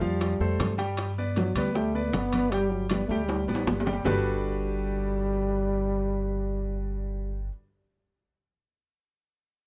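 Lively and danceable, this short Afro-Cuban jazz passage in straight 4/4 is cut from a longer piece. A mellow, close-miked trombone carries the melody up front as a jazz-style solo, its soft attacks, vibrato and scooped notes set in plate reverb. A clear concert grand piano with deep bass and a woody, thumpy pizzicato upright bass sit up front beside it, moving from Fadd9 to G. Bright, damped congas played with hard hands and round, low-tuned bongos sit in the background, joined by ringing metal-shell timbales. A drum fill from 3.3 seconds closes out the percussion at 4.1 seconds, where the harmony settles on Gmaj9 and the trombone, piano and bass carry on in light reverb.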